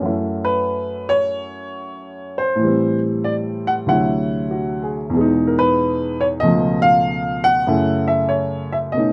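Solo jazz piano in a playful, relaxed mood, with a gentle swing and a rubato feel in this brief excerpt cut from a longer piece. A baby grand carries everything alone, its open, long-sustaining tone sitting up front as it moves through F#m7, Am7, D9, Emaj7 and C#7b13 before settling back on F#m7. A moderate club reverb places the instrument in a club room.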